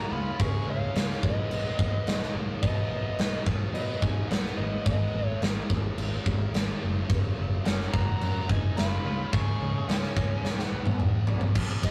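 A huge arena drum kit leads this aggressive, driving hard rock clip, sitting up front with a punchy kick, a medium-tuned snare, crashes, ride and toms, and it rolls through a fill from 10.4 to 11.6 seconds. Above it, a dark, bluesy overdriven lead guitar carries the melody in a high register, joined by an octave-fuzz lead guitar playing a second line in the background until 11.0 seconds. Underneath, two bright, scooped high-gain guitars and a sludgy, double-tracked guitar play a very quiet riff together. A modern picked electric bass adds a growly, direct low end from the background. The chords move from C# through G#m/B, B, G#m and F# to a C#5 power chord before returning to G#m/B, and the whole clip carries the rough feel of a rehearsal room with tube saturation and a short booth ambience.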